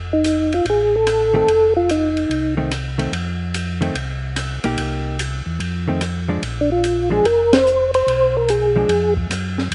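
A swung eighth-note pulse in 4/4 drives this soul jazz organ trio passage, swinging and soulful from its first bar. A round, mellow tonewheel organ carries the bass line through a slow rotary speaker, its key click audible beneath an acoustic drum kit with a punchy kick, high-tuned snare, dusky cymbals, hi-hat and rim click. Up front, a second tonewheel organ takes the melody in a soft, flute-like voice with percussive attack, chorus vibrato, slapback echo and the same slow rotary; it speaks from the start, drops away, and returns at 6.6 seconds. A clean, compressed hollow-body electric guitar, fingered and dark, plays accompaniment with its own slapback from 1.3 seconds over chords moving from F7 through Cm7 to Bb5, and the band hits an accent at 7.5 seconds. The sound is dry, with a soft top end.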